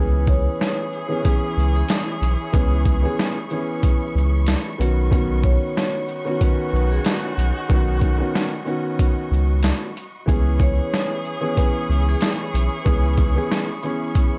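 A gritty, thumpy boom-bap drum kit sits up front with hi-hat, kick, shaker and snare, swinging at 93 BPM in C# minor beside a deep, round dub sub bass that drops out at 13.4 seconds, while a dark, mellow grand piano with audible action noise and a cassette-tape tint carries the accompaniment through C#m7 and Badd9. Punchy, tight horn stabs with delay and lush, bowed strings with portamento fill out the harmony, and a metallic, ringing vibraphone with slow motor vibrato plays a short melody in the background from 0.3 to 12.2 seconds. The reflective, moody excerpt sits in a small room with vinyl crackle and a dark production.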